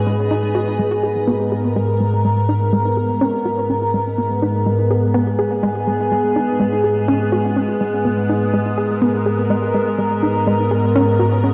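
Ambient, sequencer-driven space music with a mysterious, cosmic mood, built on an evolving wavetable pad whose detuned, morphing chords sit up front with chorus and reverb, while a twinkling granular texture sparkles briefly until 0.8 s. A hollow, bouncy square-wave pluck with a sub octave and a fast attack carries the riff from 0.1 s, treated with chorus and analog delay, and a filter sweep runs across the synth arpeggio from 0.8 s as the chords move from G#m to G#madd9. The recording has the muffled top of a cassette home recording and a wet spring reverb, and it is cut from a longer piece.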